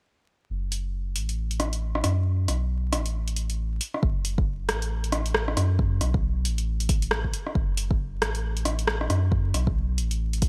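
A soft, round dub sub bass with tube saturation and sidechain pumping opens this ghostly, melancholic future garage excerpt, joined at 0.7 seconds by a tape-colored deep house kit of hi-hat and rim click swung on the sixteenths, before a deep, layered electronic kick enters at 4.0 seconds, all close and dry under a bed of vinyl crackle.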